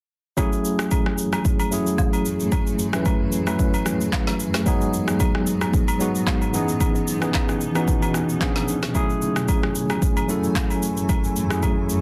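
A swung, hypnotic amapiano groove at 112 BPM in F# dorian, where an electronic afro-pop kit with a deep kick, woody soft-clipped snare, handclaps, rim click and shaker sits up front beside a clean tremolo tine electric piano through a combo amp, while a cloudy, detuned granular pad with its own reverb pumps beneath from 0.7 seconds and acoustic agogo bells and woodblock add small-room color over late-night chords moving from F#m9 through G#m7 and C#m9 to a C#7b9 turn, all in a dense, heavily limited mix.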